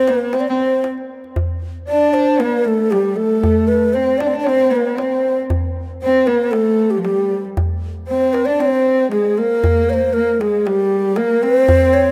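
A straight 4/4 pulse at 116 BPM drives this short, festive and passionate Arabic maqam ensemble passage in C maqam rast, cut from a longer piece. Hard-handed darbuka, with a deep clay-shell and natural-skin sound, plays close and dry from 0.1 s to 12.0 s, sitting lowest in the mix. Above it, an end-blown reed-cane ney carries the melody between G4 and D5. Its breathy, straight tone and soft attack are close-miked and up front as the loudest voice. A single bowed cello supplies a second line from F3 to D4, dark and woody with vibrato. A moderate plate reverb with a 3.4-second tail surrounds this rough home demo mix, and a new section begins at 9.6 s.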